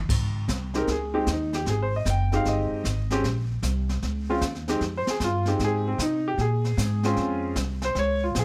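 A swung 4/4 at 153 BPM opens this cool jazz piano trio fragment: the woody, growly pizzicato upright bass sits up front from the start, and a brushed drum kit with dark cymbals, a high-tuned snare and a boomy kick joins at 0.1 s in a small, natural-sounding room. The clear concert grand piano enters at 0.7 s and takes the solo over a Dbmaj7sus2, Bbm, Fm7 and Bbm7 progression, its deep bass and long sustain ringing out close and detailed. The dry, intimate sound keeps the swinging mood tight and immediate.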